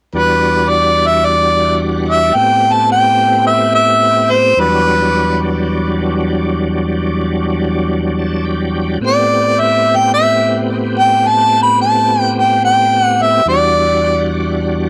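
A dry, close studio sound with a 1970s character frames this mournful, soulful blues in E minor, moving at a straight 108 BPM in 4/4 and cut from a longer piece. A bright, shouting tonewheel organ with slow rotary speaker and chorus vibrato carries the accompaniment through Em7 and Am7 changes, filling alone at 7.9 seconds. Up front, an overdriven harmonica sings the jazz-style solo melody with vibrato, scooped notes, soft attacks and a smooth top, resting from 5.4 until 9.1 seconds before returning.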